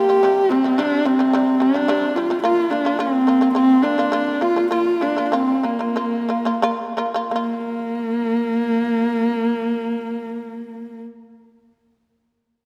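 A dark, husky horsehead fiddle sings the bowed melody with vibrato and portamento over buzzing, plectrum-plucked shamisen arpeggios in this vast, galloping Mongolian folk fragment in a Bb gong mode, moving at 82-109 BPM in straight 4/4, slowing between 2.4 and 7.3 seconds before a new section arrives, all bathed in a concert hall reverb.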